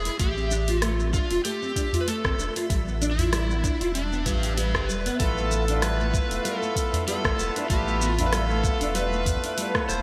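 Organic downtempo with a meditative, earthy mood, this excerpt sets an overdriven slide guitar melody over fingerpicked nylon-string guitar arpeggios, full-bodied and classical in tone, both carrying chorus and digital delay. Beneath them a round, sine-like sub bass sits up front with tube saturation and sidechain pumping, while a twinkling granular texture adds a sparkling, octave-up shimmer in the background. A layered deep house kit of hi-hat, rim click and shaker with gated reverb joins almost at once alongside a deep electronic kick, both re-recorded in a small room, and a small, dry udu slips in at 1.9 s. The harmony moves from Dm7 to G13 over a gentle swung sixteenth feel. At 5.2 s a reedy, breathing pedal harmonium enters up front, its boxy tone pumping with the bass and trailing digital delay. The whole mix sits in a lush hall reverb with a bright 1980s-style digital sheen.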